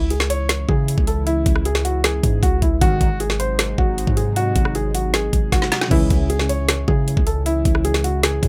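Half-time trap at 155 BPM in C# harmonic minor, this dark, melancholic excerpt rides an up-front electronic kit of knocking kick, woody snare and metallic hats, with a drum fill at 5.5 seconds, under a long, deep sine 808 bass and a moody, detuned analog pad with chorus. A dark, mellow baby grand piano carries the melody up front with delay, while a glossy, retro polysynth drops brief chorused stabs at 2.8 and 5.9 seconds as the chords move from C#m to G#7 and back. From 5.9 seconds a soft, round electric-piano-like synth with chorus and tremolo joins in the background, all in a dry sound.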